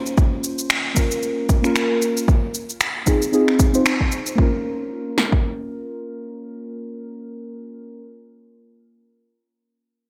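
Muted, felt-like synth keys open this hypnotic, meditative slice of organic downtempo, cut from a longer piece. Their soft, full-bodied tone blends triangle and sawtooth waves with a noise layer, giving a fast attack and a decaying tail, shaded by chorus, sidechain pumping and digital delay. A low-pass filter darkens the keys and sweeps across them through the first half as they carry the accompaniment. An electronic shaker and finger snaps with a tape-like glow join almost at once, framed by gated reverb, and drop away at 4.4 seconds. A deep house drum kit sits loudest in the mix, its deep kick and punchy snare layered and roughened with overdrive until it stops at 5.4 seconds, leaving the keys to close alone in a swung feel. A wet plate reverb and a bright 1980s-style digital production fill out the space.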